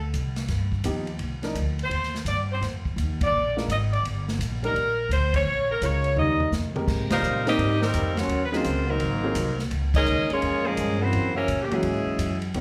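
A woody, thumpy pizzicato upright bass opens this swinging big band excerpt at 169 BPM in Eb major, with the drum kit arriving almost at once: a punchy kick, medium-tuned snare, hi-hat, ride, crash and toms in an airy, polished hall sound. A baby grand piano with open tone and long sustain adds rich chords such as G7b13 and Cmadd9. At 1.8 seconds the bright, up-front saxophone section takes the melody with jazz vibrato. A smooth-topped trombone section joins on a second line at 6.2 seconds, as a drum fill carries the band into Ab major at 6.9 seconds, where the harmony moves through Abmaj9, Ebm11 and Db6. Brassy ensemble accents punctuate the swing, the piano briefly drops out near the end, and slapback echo on the piano and horns blends with the club reverb of a live gig heard through the venue's PA.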